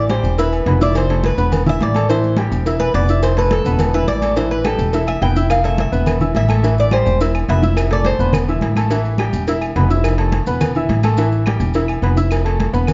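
A mellow, metallic Cuban tres with picked double strings solos through the first 8.3 seconds of this fiery, passionate salsa fragment, backed by a clear, polished baby grand piano, an up-front woody pizzicato upright bass, and background percussion of thick-skinned, damped congas, a tight, saturated cowbell, ringing agogo bells and timbales, grainy maracas and, from 4.6 seconds, dry claves, with the whole mix sitting in a dark, large studio with moderate reverb.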